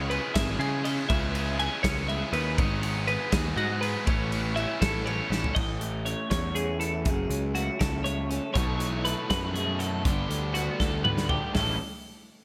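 Intricate and wistful, this math rock and midwest emo passage moves in a straight 6/8 at 80 BPM, with a bright, clean, twangy twelve-string electric guitar picking compressed arpeggios over a round, punchy fuzz bass and a loose, up-front indie drum kit whose punchy kick, dark cymbals and gated reverb pump through a small room, while a double-tracked overdriven guitar riff drops out before returning at 8.5 seconds and a slightly broken-up, lo-fi guitar through a small old amp joins with ensemble chorus at 5.6 seconds, all set in light reverb and 1980s-style digital production as the chords drift from C#m7 toward Amaj7.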